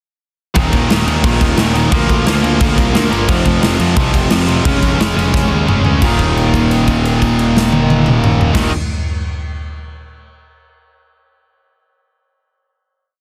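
A big acoustic rock kit sits up front in this short, rebellious and upbeat punk rock piece, driving a fast punk groove with a punchy kick, a medium-tuned snare, toms and bright crash cymbals. From 0.6 seconds, a growly fuzz bass plays driving eighth notes, overdriven and both direct and amped. Behind it, two tight, distorted, picked electric guitars drive eighth-note power chords, joined by a dark, double-tracked, overdriven guitar tucked very quietly underneath. The riff moves through Eb5, Bb/D, F5 and Db/F before a drum fill at 5.3 seconds leads to a final Eb5 chord at 6.0 seconds that is held almost to the end. The sound is dry and dense, with a heavily limited modern master.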